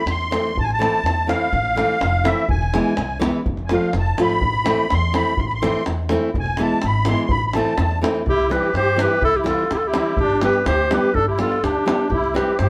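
A straight 2/4 pulse at 125 BPM drives this fiery, virtuosic Balkan wedding-band cut, with a deep davul in a live room, a woody, thumpy pizzicato upright bass on gut strings, and a full-bodied, fingerpicked nylon-string guitar whose finger squeak comes through. In A harmonic minor, a reedy, shimmering musette accordion sits up front and takes the solo for the first 8.3 seconds. At 8.3 s the harmony turns to C major, and a mellow, classical-style clarinet enters up front with the melody, all played live together in one room with moderate studio reverb.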